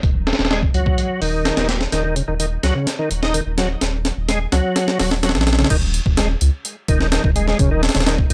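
Funky and gritty, this breakbeat excerpt runs at 127 BPM in 4/4 with a straight feel, centred on E-flat minor. A sampler-style drum kit sits up front with a thumpy kick, a high-tuned snare, hi-hat and crash cymbal, all low-pass filtered and compressed, while a saturated sub bass lays down a deep, thick sine tone with a fast attack and long sustain. From 0.5 s a bright tonewheel organ shouts out a riff, lightly overdriven and coloured by chorus vibrato, a slow rotary speaker, tube saturation, 12-bit sampler grit, a low-pass filter and tape echo. The opening stretch is a build-up over an E-flat minor chord, with a filter sweep on the drums and a drum fill from 1.9 s. At 5.7 s the chord drops away and the track hits its drop, all of it set in a light reverb.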